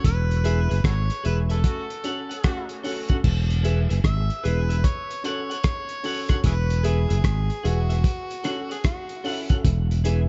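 Laid-back and uplifting, this short roots reggae excerpt in E major rolls at 75 BPM with a swung 16th feel, carried by a growly, up-front fretless bass and a cloth-damped, muffled drum kit of tight kick, rim clicks, hi-hat and dark crashes, while a gritty overdriven harmonica with tongue slaps and dub echo sings the melody over dark, woody upright piano stabs, a clean picked guitar in the background, and a brief smooth-topped horn section line from 1.6 to 3.2 seconds, all moving between E and F#m in a mellow reverb-washed room.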